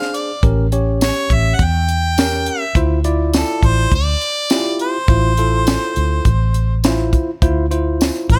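A clear harmonica with light vibrato carries the melody from the start over bell-like tine electric piano and a dry, tight funk drum kit with high-tuned snare, hi-hat and tambourine, joined at 0.4 seconds by a dark, round, foam-muted fingered electric bass, in a soulful, brooding straight-eighth soul blues at 103 BPM that moves from A7b9 to Dm7 in this close-sounding fragment cut from a longer piece.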